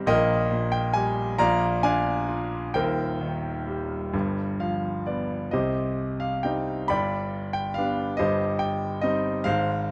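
A clear concert grand piano carries this short, tender classical excerpt alone, its smooth tone reaching down into a deep bass and up into the upper register, set up front with a vintage character. The piece moves slowly in a lilting 6/8 at 44 dotted-quarter beats per minute, with uneven, rubato timing that gives it a lyrical, breathing quality. It opens in Eb major, moving through Eb/Bb, Bb and Eb6 before a G7 chord and a brief piano fill at 4.1 seconds lead into a new passage. From 5.5 seconds the harmony turns to C harmonic minor, shifting between Cm, G and Cm/G while the mood stays warm and gentle. Close, detailed miking captures the instrument intimately, with light reverb adding a touch of space around it.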